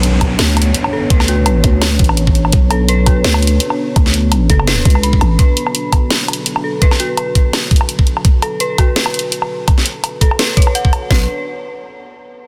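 A growling, buzzy 808-style bass stands out in this heavy, dark half-time drum and bass excerpt, sitting up front with fast-attack, decaying notes before dropping out at 5.4 seconds and returning only briefly at the very end. Two layered electronic drum kits drive the groove with a lightly swung half-time feel: one pairs a kick with a cracking snare, while the other adds hi-hat, woodblock and a snare roughened by soft clipping. Beneath them, a deep, moody analog pad holds sustained chords on B minor with an added ninth, its slow attack pumping against the beat while a filter sweep runs across it through the whole passage. An eerie, inharmonic FM bell spins arpeggios above, its mellow tone shaded by chorus, tremolo, a low-pass filter and delay. A short electronic downlifter falls away in the opening 2.5 seconds, and the dense, heavily limited mix carries only light reverb.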